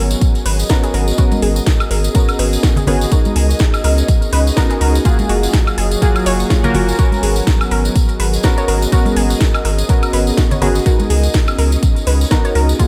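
Late-night and hypnotic, this deep house excerpt moves at 124 BPM in 4/4 with a swung sixteenth-note feel in G# dorian, cut from a longer piece. A punchy, tape-warm electronic kick sits up front from 0.2 seconds, joined by a house kit with a cracking snare, metallic hats and woodblock, plus a jingly tambourine and bright, hard-handed congas in the background from 1.3 to 11.1 seconds. A round, deep analog bass with a nasal, dark edge anchors the low end, pumping against the kick along with the other melodic parts. Evolving pulse-and-sawtooth keys play chorused stabs that trail into a diffuse ambient delay, while a warbling, lo-fi, detuned pluck spins mellow arpeggios behind them with chorus and delay. An ethereal, airy pad with a slow attack and long release floats over the chords G#m11, C#13sus4 and F#maj9, its ensemble chorus and built-in reverb adding to the light digital ambience around the mix.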